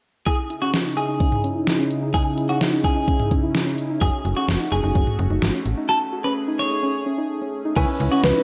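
Synth-pop at 128 BPM in C# minor, this driving, cool excerpt opens with an up-front electronic drum kit (knocking, overdriven kick and deep snare), a bright, twangy twelve-string electric guitar with slapback echo, a swirling phased analog pad, and soft, round pluck arpeggios under a filter sweep, moving from C#madd9 to F#m. A snappy, metallic FM slap bass joins at 4.0 seconds. A clear grand piano appears at 7.8 seconds on C#m7, and a smooth, expressive synth lead with chorus and vibrato touches a single B4 at 8.2 seconds, all within a dark production and moderate plate reverb.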